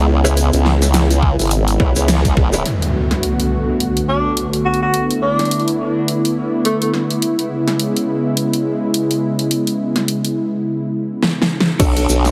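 A heavily compressed, radio-like sound bathed in a lush hall reverb frames this gritty, funky glitch hop excerpt at 105 BPM in B dorian, swung on the sixteenths, as a smooth, warbling vintage pad sustains chords from C#m7 to Bm7 with sidechain pumping. An up-front, detuned, formant-filtered wobble bass joins the pad at the start, quickly followed by a dark, clean electric guitar with dub echo, a grainy shaker and an up-front, overdriven dubstep kit with a huge snare and bright hats. A knocking, overdriven kick punches in at 1.2 seconds, then a band accent at 2.1 seconds and an electronic impact at 2.7 seconds clear the way. A mellow, distant tenor saxophone with vibrato and dub echo then takes a jazz-style solo from 4.1 seconds, and a drum fill at 11.2 seconds brings the bass, guitar, shaker and kick back in at 11.8 seconds.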